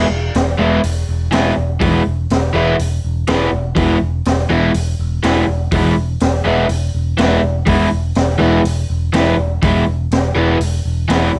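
A raw, up-front mix with light reverb carries this rowdy, swaggering garage rock excerpt at 123 BPM in a straight 4/4, sitting on an E major chord throughout. A crunchy, double-tracked overdriven guitar drives the riff between E3 and E4 over a bright, growly picked bass holding low E1. The small-room drum kit joins at 0.3 s with a punchy kick, high-tuned snare and hi-hat, its saturated tone roughened by vintage 12-bit sampler grit and a rolled-off top.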